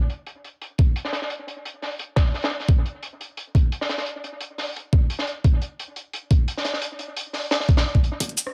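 A gritty, thumpy electronic kick drum stands out in this dreamy, soulful drum and bass excerpt, entering at 0.8 seconds with a compressed, sampler-style punch and a natural pitch. It was re-recorded in a small room and sits up front, carrying the straight 4/4 pulse at 174 BPM. Beneath it, a crunchy breakbeat kit of acoustic hi-hat and high-tuned snare runs from 0.1 seconds, its dark, smooth sound and rolled-off top giving a soft, mellow edge, with analog delay trailing the hits and filtering shaping the hats, snare and room. At 8.2 seconds, a layered, produced electronic kit of bright hats, rim click and shaker arrives briefly, also re-recorded in a small room and placed up front. The mix carries little reverb but leans heavily on echo, giving the close, dry drums a hazy, dreamlike depth.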